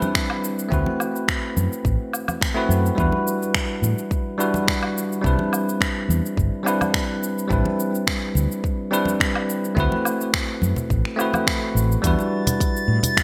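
Sunset chillout in E minor at 106 BPM, smooth and wistful, with a bell-like tine electric piano carrying delayed extended chords up front over a deep electronic kick, a deep house kit of finger snaps, smooth hi-hat, shaker and woodblock in gated reverb, hard-handed congas set back in the mix, and a round, amped fretless bass entering at 0.7 s, before a glassy, drifting harmonics texture with chorus appears at 12.3 s, all within a lush hall and bright 1980s-style digital production.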